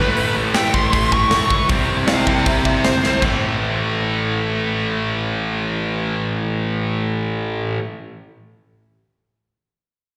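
Punk rock, upbeat and energetic, opens on a dark, overdriven lead guitar solo with slapback echo over a pair of distorted guitar riffs (one tight and up front, one compressed in the background), a growly fuzz-picked bass and a polished metal drum kit with bright cymbals that plays from 0.2 to 3.3 seconds, adds a fill at 3.0 seconds, and leaves the guitars and bass driving on through 7.8 seconds, all heard as a live gig through a venue's PA in a recital-hall reverb.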